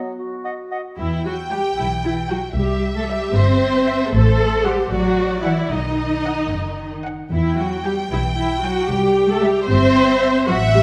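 A close, smooth violin section carries the melody in this playful, whimsical film cue, its vibrato-laden line entering at 1.5 seconds and staying high above a lush bowed string ensemble for a quirky, mischievous mood in a lilting 6/8. Before the strings arrive, a brief woodwind flicker opens the piece: a clear solo clarinet sounds first, joined for a moment by an airy, hollow flute in the background and a mellow, lightly vibrato oboe, all gone within the first second. At 1.0 seconds the full string body takes over, with a rich, distant violin section singing a second line while an expressive, up-front viola section fills the middle with portamento slides. Below them, an even cello section and a soft-attacked double bass section anchor the harmony, which moves through Em, C, F#m7b5/A and B before returning to Em and C. A moderate scoring-stage reverb gives the strings a spacious, cinematic bloom, and the passage is cut from a longer piece.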